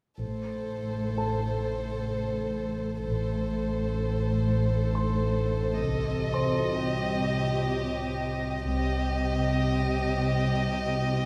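Cinematic suspense score at 64 BPM in 3/4, mysterious and tense, where a warm, up-front chamber violin section bowing softly sul tasto with vibrato sits over a woody cello section and a dark double bass section in the background, an eerie, metallic, inharmonic drone with chorus and phaser swells in slowly from 0.7 seconds, a clear grand piano adds faint high texture from 1.2 seconds, and the harmony shifts from A minor to C minor at 5.9 seconds, all within a moderate recital-hall reverb in this short excerpt from a longer piece.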